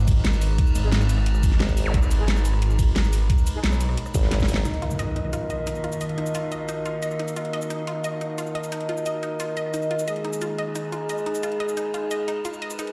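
Dark technical drum and bass at 177 BPM in Eb minor, tense and futuristic, cut from a longer piece that opens mid-drop with a swirling, saturated detuned saw bass, a knocking electronic kick and a huge-snared kit with metallic hats, while an eerie, wave-folded metallic drone pumps underneath and a mellow brass section enters with tape-echoed stabs at 0.8 s. A compressed formant wobble bass cuts in twice and a zap marks 1.9 s, before a drum fill and band accent lead to an impact at 4.7 s, by which point the bass and kick have dropped away. From there a lush, warbling unison pluck arpeggio runs through a filter sweep, moving from Ebm back to Abm over the brass, kit and drone, all set in a large, reverberant room.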